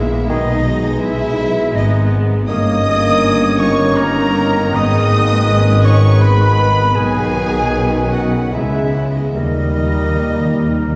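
Heard from further back in a reverberant concert hall, this elegiac classical fragment moves in a rubato 3/4 at around 71-84 BPM. A softly attacked violin section carries the melody with light vibrato, joined by an airy concert flute, while a second, expressive violin section, a distant clarinet and a clear oboe add lines in the background. Beneath them a smooth viola section and mellow bassoon accompany, a dark horn section and trombones hold quiet chords, a ringing harp plays arpeggios, and woody cellos, a double bass section with portamento and a soft tuba anchor the bass, before close, dry timpani enter at 9.3 seconds with a fill from 9.4 seconds over the closing D# chord.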